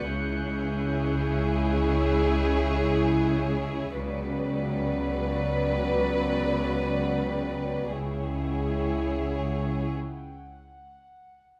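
In free time, this ominous, eerie suspense cue in C# phrygian moves from C#m to Bm/C# and back. Muted, con sordino violins carry a veiled melody over a second violin line, with viola accompaniment in the background and mellow French horns sustaining chords behind them. Cellos and an up-front, lush double bass hold a dark bowed bass. From the start, distant studio violins add a high texture that lingers alone to 11.5 seconds, all captured with close, detailed microphones and light reverb.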